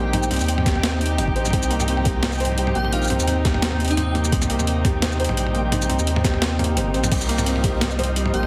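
Spacious and tense, this half-time drum and bass excerpt moves at 172 BPM in C minor, cut from a longer piece and resting on a single C minor chord. A saturated sub bass, deep and thick with tube saturation, anchors the low end while a felt-muted upright piano plays soft arpeggios with audible action noise and dub echo. Behind them, a bowed studio string section with a reedy, gut-string tone holds sustained chords under sidechain pumping, and a grainy, flickering granular texture hovers in the background. The sampler-style drum kit sits up front, gritty and overdriven with a high-tuned snare, crash, hi-hat, shaker and toms, joined at 0.7 s by a thumpy, pitched-down electronic kick. An airy, dreamy lead with chorus, phaser and vibrato drifts in from 2.8 to 4.1 s and returns briefly at 8.3 s. The mix carries light digital ambience and a heavily compressed, radio-like sound.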